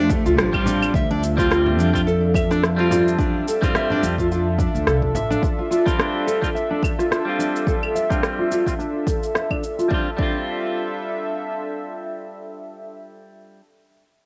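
Cassette-hued home recording with moderate reverb carries this mystical, hypnotic organic downtempo fragment at 107 BPM in D minor, where a clear bowed cello sings a brief background phrase over a smooth detuned pad, bright fingerpicked nylon-string guitar arpeggios and a twangy clean electric guitar (both under filter sweeps from 0.9 to 9.9 seconds), woody pizzicato upright bass, a punchy up-front electronic kick, electronic cabasa, rim click and claves, and a very quiet close frame drum, moving from Dm to Dmadd9 with the electric guitar lingering until 13.6 seconds.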